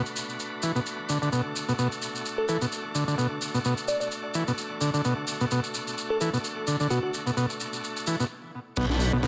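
Gritty and energetic, this short breakbeat cut at 129 BPM in B minor with a light 16th-note swing rests on a Bm7 chord, as a bright, shouting tonewheel organ holds sustained chords through overdrive, fast rotary speaker, filtering and sidechain pumping over a crisp, tape-warm garage kit of handclaps, hi-hat and shaker. A buzzy vintage combo organ riff sits up front in the low register from 0.6 seconds, and a sparkling, bell-like FM electric piano melody with chorus, delay and a telephone-filtered tone floats above between 2.4 and 7.1 seconds. After a brief stop, a thick, menacing detuned saw bass and a crunchy, saturated breakbeat kit with a high-tuned snare and dark cymbals enter at 8.8 seconds, all set in a small, lightly reverberant room.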